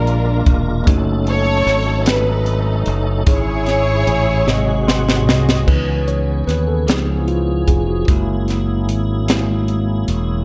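Slow, fervent gospel in a straight 6/8, where lush, woody strings carry the melody until 5.2 seconds over mellow tine electric piano, a tonewheel organ holding sustained chords through fast rotary speaker and chorus vibrato with audible key click, a bright, growly fingered bass and a crisp fusion kit with a high-tuned snare and punchy kick, before drums, piano and organ share a fill and the electric piano takes a soulful solo from 5.7 seconds in a dark production with light small-room reverb.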